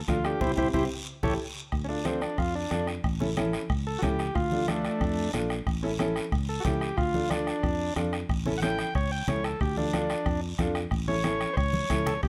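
Light reverb surrounds this driving, passionate cumbia excerpt at 183 BPM in D harmonic minor, with a mellow vintage combo organ up front carrying the melody through a plate reverb. A woody upright piano with short sustain and a round, foam-muted fingered electric bass fill out the harmony. A soft-beater bombo, thick-skinned congas set back in the mix and a raspy guiro drive the groove, and after an opening band accent and drum fill, the organ solos from 1.7 seconds over alternating Dm and A7 chords, with another fill at 11.7 seconds.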